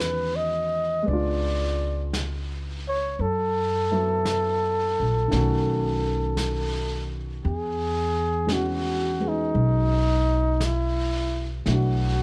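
A breathy, mellow flugelhorn carries the melody up front, its light vibrato and scooped notes giving this romantic, tender jazz ballad a hushed intimacy. Beneath it, a warm baby grand piano supplies the accompaniment, moving through lush extended chords that begin on Emaj9 and return to it at 7.4 seconds. An upright bass, plucked and woody with a growly edge, sits close to the listener and anchors the low end. A vintage brush kit, recorded in a small room with a rolled-off top, brushes the snare and touches the hi-hat softly in a slow, swung 4/4 feel. Light reverb and a dark production tone wrap the ensemble in a late-night glow throughout this 12-second fragment of a longer piece.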